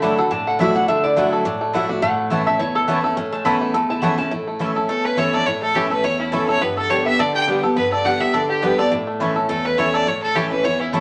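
Virtuosic and driving, this swung bluegrass excerpt at 209 BPM opens with a metallic, nasal lap resonator guitar taking a steel-bar slide solo over a bright, full-bodied picked dreadnought with fresh strings and finger squeak, twangy, percussive banjo arpeggios and woody mandolin stabs in the background, before the music shifts to A mixolydian at 4.3 seconds and a clear, biting fiddle with light vibrato takes the melody up front from 4.9 seconds, all set in a club reverb with vinyl crackle.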